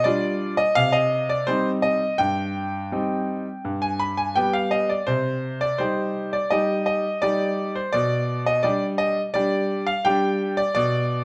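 A dramatic, serious classical-period piano sonatina in C minor, moving at a steady 84 BPM in a straight 4/4, heard as a short cut from a longer piece. A bright grand piano plays alone and up front from 0.0 to 11.2 seconds, its brilliant, smooth, vintage tone ringing with long sustain across a range from G2 to B5. Close, detailed microphones capture the instrument within a moderate recital hall reverb, as the harmony moves from an opening G7 through C minor and G to a G/B chord at 7.9 seconds.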